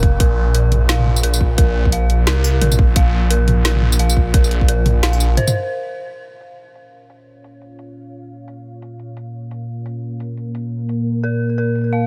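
Half-time drum and bass with a dark, spacious mood, cut from a longer piece, opens on an eerie, inharmonic synth bell playing arpeggios with chorus, 12-bit grit and digital delay over a swirling, thick phased saw bass, a tight up-front electronic kick and a filtered kit with a woody snare, bright hats, tambourine and toms, before the bass and kick drop out and a deep, moody pad enters at 7.8 seconds with sustained chords, sub-octave weight, sidechain pumping and a filter sweep.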